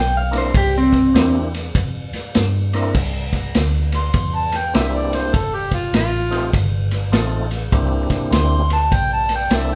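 A gritty, overdriven harmonica, with its vibrato, scooped notes and tongue slaps, takes the solo from 4.0 seconds in this rollicking, laid-back electric blues shuffle at 100 BPM in C mixolydian, after a slightly broken-up, lo-fi electric guitar line that sounds only for the opening 1.3 seconds, all over a round, foam-muted bass, a percussive tonewheel organ on slow rotary speaker and chorus vibrato, and a vintage drum kit with a punchy kick and dark cymbals, played live in one room through a moderate studio reverb.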